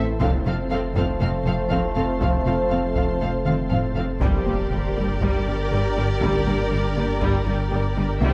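A straight 4/4 pulse at 120 BPM from distant, hard-stick taiko drives this futuristic, vast hybrid orchestral and electronic film cue in G minor, where dark and warm violin sections, rich violas, bright trombones and mellow French horns sit over a shimmering ambient pad with chorus and built-in reverb, woody double basses, very quiet cellos, a thick saturated sub bass and a juicy, squelchy blip pluck playing very quiet arpeggios, before the horns and brass drop out and a huge, dark impact arrives at 4.2 s as the harmony shifts from F to Gm, all framed by a scoring-stage reverb.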